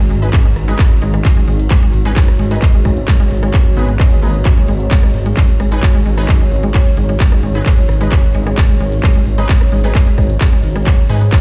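Heard through a big sound system in a bare stone room with a light reverb, this short excerpt of driving peak-time techno runs at 131 BPM in a straight 4/4, holding on G# minor in a relentless, hypnotic mood. A heavy, layered electronic kick sits up front from 0.3 seconds, loudest of all, with a techno drum kit of handclaps, smooth hi-hats, ride cymbal and rim clicks. Beneath it, a deep, rumbling detuned saw bass, saturated and beating, pumps with the sidechain. A juicy, squelchy resonant blip pluck carries the riff through chorus and digital delay. In the background, a moody ambient pad drifts with chorus and reverb, while an aggressive rave stab adds bright, phaser-tinged, delayed hits. Very quiet underneath, a swarming drone evolves with a tense, granular, wave-folded tone.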